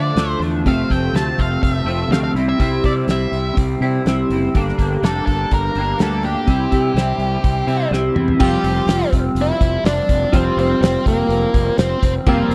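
Psychedelic rock with a mysterious, hypnotic pull at 124 BPM, this fragment of a longer piece sets a dark, distorted octave-fuzz lead guitar melody with slapback echo over a bright, flanged twangy electric guitar riff and a growly overdriven fingered bass, while a cloth-damped, thuddy drum kit with a fat snare, tight kick and dark cymbals joins at 0.2 seconds and plays a fill from 7.9 seconds into a shift to a new section at 8.4 seconds, all captured in a dry, close 1970s-style studio sound with a faint mains hum and tuned slightly flat to A4 = 439 Hz.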